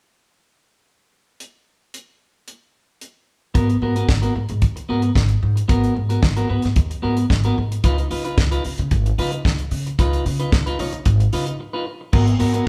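A band playing together in one large studio, with a moderate reverb that gives the room some air, opens this danceable, driving disco cut taken from a longer piece. The damped 70s drum kit starts alone at 1.4 seconds, dry and up front, with a fat snare, a tight kick, hi-hat and crash cymbal setting a straight 112 BPM pulse in 4/4. At 3.5 seconds the clean electric guitar arrives, picked and forward in the mix with a warm tone, and a moment later the upright bass joins it, its pizzicato steel strings sounding woody, dark and thumpy in the low register. The harmony in G# dorian, tuned to A4 = 441 Hz, moves from G#m9 to C#9 and back. A short break comes at 11.6 seconds before the groove lands again on G#m9.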